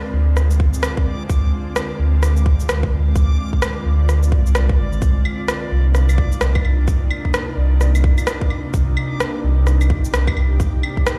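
Melancholic and wistful, this short future garage fragment drifts on a swung groove: an ethereal, detuned pad, softened by chorus and reverb, holds Dm7b5 before shifting to Cm11 at 5.0 s under a sidechain pump, while a faint reversed granular swell glints above it, a round, sine-like sub bass pumps up front, and a tight, tape-toned electronic kick joins an electronic rim click, shaker and claves, the drums all sounding re-recorded in a large room.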